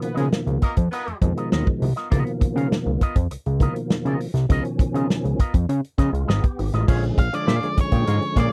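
A dry mix with little reverb carries this short, energetic funk cut with a strutting feel. A roomy, distant soul drum kit sits up front with a tight kick, a medium-tuned snare, hi-hat and dark crash cymbals, while a fat, saturated analog bass built from detuned sawtooth and square waves drives the low end with fast attacks, sustained notes and a filter sweep. A lightly overdriven tonewheel organ plays percussive stabs through chorus vibrato and a fast rotary speaker, and a bright, twangy electric guitar adds clean, picked accompaniment shaped by an envelope filter and subtle chorus. A warm horn section with light vibrato plays an ensemble second line at the start, dropping out at 1.2 seconds before a brief return near the end. The harmony moves from a Db13 to a Bb7#9 at 6.9 seconds, and at 7.2 seconds a dark, fuzzed-out lead guitar enters with a short distorted melody.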